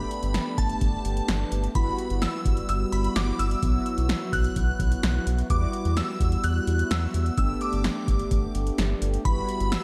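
A straight 4/4 electro drum-machine groove at 128 BPM, with a deep kick, punchy snare and metallic hats re-recorded in a large room and placed up front from 0.1 s, drives this cool, nocturnal synth-pop excerpt in E minor, where a round, sine-and-sawtooth analog bass holds the low end beneath mellow, detuned, filter-swept synth brass with chorus and a shimmering, warbling FM bell melody wrapped in ensemble chorus, the harmony moving through Gadd9, Emadd9/G, Bsus4 and Emadd9 in a dark production touched with light reverb and digital ambience.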